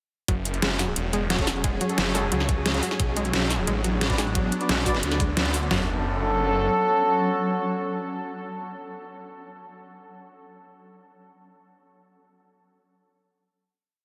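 Tense and dark, this short technical drum and bass piece opens its drop at 0.3 s with two layered electronic dubstep drum kits, one built on a knocking kick, toms and deep snare and the other on up-front metallic hats, shaker and snare, joined by a snarling, growling distorted saw bass in chopped phrases and a round analog pluck whose three-step arpeggio loop drifts against the bar in the background, while a swarming, evolving drone and sparse brass ensemble stabs that echo one chord shape moved in parallel join shortly after and linger through the final chord from 5.7 s, the whole mix soaked in huge, dreamy reverb.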